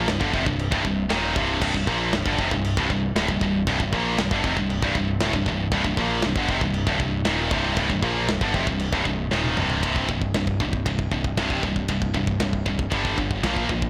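A straight, driving 4/4 pulse anchors this relentless, epic heavy metal excerpt, cut from a longer piece. Two heavy high-gain electric guitars, bright, distorted and picked, sit up front, both playing the riff, while a growly, direct electric bass holds down the low end beneath them. A tight acoustic metal drum kit with a medium-tuned snare, a tight kick, toms, and crash, ride and china cymbals drives the groove, its snare pushed into soft clipping. A drum fill at 9.3 seconds leads into a new section, where the harmony shifts from a minor chord to stark power chords, moving again at 12.9 seconds. The whole recording sounds blown-out and overdriven, set in a small room ambience that adds a raw, crushing edge.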